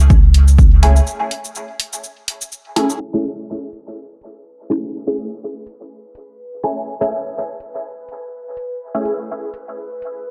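Cavernous and nocturnal, this dub techno excerpt at 124 BPM in 4/4 with a light 16th-note swing opens on a deep, round sub bass with tube saturation and sidechain pumping beside an overdriven kick that both stop by 1.0 seconds, while a dry, punchy analog drum machine with crash, hi-hat and shaker runs to 10.1 seconds, a muted, detuned chord stab with phaser and dub echo plucks between 0.8 and 9.1 seconds, and from 4.6 seconds a bubbling, resonant texture of random filter steps, chorus and reverb adds a bright glow to the dark, low-passed mix.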